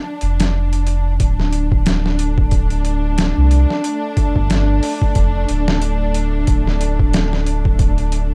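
A gritty, pitched-down boom bap sampler-style drum kit sits up front with a thumpy kick, medium-tuned snare and hi-hat, overdriven and compressed in a small room, while a deep, round dub sub bass with tube saturation enters alongside it at 0.2 seconds. This melancholic, dark trip hop excerpt moves at 91 BPM in 4/4 with a swung 16th feel, opening on a woody studio string section holding soft-attack bowed chords with light vibrato over G7 and Gsus2/D harmony. From 2.0 seconds a tense, detuned string-like drone with a noise layer and its own reverb hovers in the background, giving the dark production a shadowy digital ambience.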